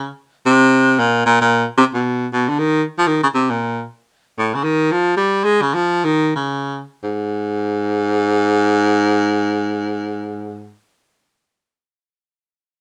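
A clear baritone saxophone plays alone and up front through this short jazz excerpt, its lines moving in free time. The mood is swinging and relaxed, with the horn shaping its phrases using vibrato and scooped notes in an easygoing jazz style. Its tone stays clear through the lower register and turns smooth at the top of its range. Around 4.6 seconds the playing begins slowing down, easing until about 7.0 seconds. Light reverb gives the solo horn a touch of space, and the passage is cut from a longer piece, ending at 10.8 seconds.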